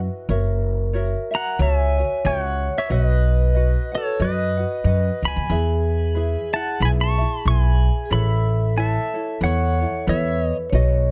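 This sunny, dreamy Hawaiian excerpt opens with three parts together: a woody, thumpy upright bass plucked pizzicato on gut strings and sitting up front, a light fingerpicked acoustic tenor ukulele, and a mellow, metallic vibraphone with soft mallets and its motor off. The vibraphone rings in the background through plate reverb and tape echo. At 1.3 s a clean electric pedal steel guitar takes the melody, twangy and compressed, played with fingerpicks, with slide and volume swells, sitting up front in plate reverb until 10.6 s. The harmony moves through F#7, B, E and Aadd9 over a swung 4/4 feel. The production is dark and warm with light reverb, and the clip ends at 11.1 s.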